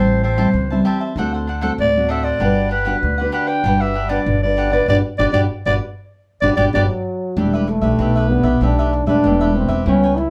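The recording sits in a wet studio room, heard from a little further back, with a short ambience around the players. It is a playful, joyful samba in a straight four, cut from a longer piece. A growling clarinet leads the melody up front, raspy and gritty with light vibrato and a plate reverb sheen, phrasing in a jazz style over chords moving from Am7 through D7 to Gmaj7. Beneath it, a mellow, crisp picked cavaquinho and a thumb-plucked classical nylon-string guitar fill out the harmony, while a woody, thumpy pizzicato upright bass with steel strings sits close and warm at the bottom. The band hits an accent at 4.9 seconds, and as the clarinet drops out a trombone takes over at 6.8 seconds. Its warm solo from 7.4 seconds over Em7 is smooth-topped and jazzy, with vibrato and scooped notes.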